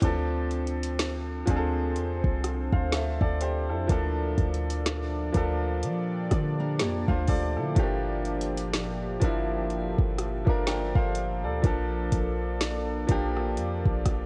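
Contemporary R&B with a moody, sensual feel and a lightly swung sixteenth-note groove, built on a clear, up-front baby grand piano and a smooth, detuned sawtooth analog pad with chorus holding long chords over Dm7, Bbmaj7/D, Gm7 and Bbmaj7. A deep, boomy 808-style bass with a fast attack sits beneath a produced electronic drum kit of soft kick, woody snare, rim click and metallic hi-hats, roughened by vintage 12-bit sampler grit. A fingerpicked nylon-string guitar with finger squeak and tape echo surfaces in the background only from 6.3 to 7.7 s, while light reverb and a worn, warbling cassette-tape pitch drift colour the whole mix of this passage cut from a longer piece.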